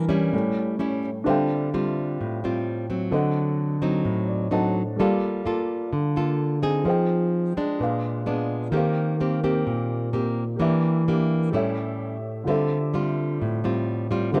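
A straight 4/4 bossa nova pulse at 128 BPM carries this intimate, melancholic passage in D minor, cut from a longer piece. It opens with a brief grand piano solo before the harmony settles at 1.3 seconds, moving through rich chords such as Dm11, D7b9, Gm9 and Bb7b9 before returning to A7 and Dm11. The fingerpicked nylon-string guitar sits up front with a classical, acoustic tone, and a little finger squeak adds to its closeness. The baby grand piano plays accompaniment at a lower level, sounding warm and natural with audible action noise, and it steps forward with a short fill at 4.1 seconds. Light reverb and small-room ambience surround a dry, close, 1970s-style studio sound.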